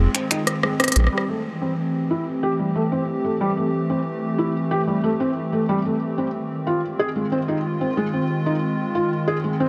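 A straight 4/4 pulse at 92 BPM opens this intricate, melancholic IDM fragment, cut from a longer piece. The pulse is carried briefly by an industrial drum kit of finger snaps, crisp hi-hats and rim clicks, with soft clipping on the snare and a fill starting at 0.5 seconds. A round, deep analog bass sits on Bb1 under the opening Fm7 and stops at 1.1 seconds, as the harmony shifts to Am7 for a longer second section before returning to Fm7 at 6.3 seconds. A felt-muted upright piano plays arpeggios throughout, its thick felt and audible action noise shaded by a low-pass filter and delay, with a filter sweep running through the second section. Alongside it, a hollow, flute-like pad sustains chords with chorus and vintage 12-bit sampler grit, while a warbling, nostalgic lead with vibrato flickers at the very start, barely audible. A huge ambient reverb surrounds the dense, heavily limited modern master.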